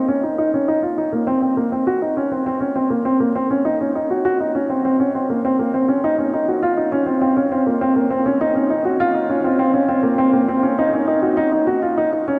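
A straight 4/4 pulse at 101 BPM carries this intimate, hypnotic electronica fragment in Eb dorian, tuned to A4 = 442 Hz, with a lone grand piano playing up front between Bb3 and Gb4, its dark, mellow and natural tone trailed by tape echo. Soaked in a cathedral reverb with a 6.1-second decay, the dreamy mix builds from 1.9 s until a drop at 11.4 s, just before the cut at 12.4 s.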